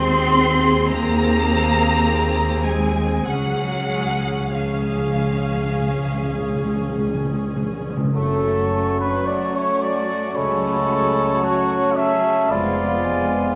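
Classical orchestral music in F# minor, yearning and elegiac, moving at a slow, rubato 48-56 BPM in 4/4 in this short excerpt cut from a longer piece. Lush, bowed string sections carry it from the start: violins sing an expressive vibrato melody over a second violin line set in the background, smooth violas fill the accompaniment, and focused cellos and double basses anchor the bass, while a very quiet concert harp rings out fingerpicked arpeggios. A close, dry timpani fill with medium mallets sounds from 3.3 to 8.1 seconds beneath the opening chords. At 8.1 seconds the music turns to F# minor and the winds and brass arrive: a pure, hollow silver flute adds a second line, dark trumpets stand up front with stabs, a tight horn section holds sustained chords, and a bassoon murmurs in the background, joined at 10.4 seconds by a solo cor anglais with light vibrato. The whole sits in a wet scoring-stage reverb with a layer of vinyl crackle, and the passage closes on a diminished seventh chord.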